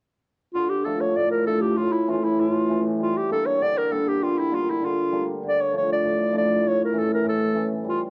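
A soft-attacked clarinet with a smooth top leads this soulful, festive klezmer excerpt in classical style, carrying the melody up front over a shimmering, ringing hammered cimbalom that moves through Dm, A and Gm chords from 0.5 s, both heard through plate reverb and the gentle grain of a home cassette recording.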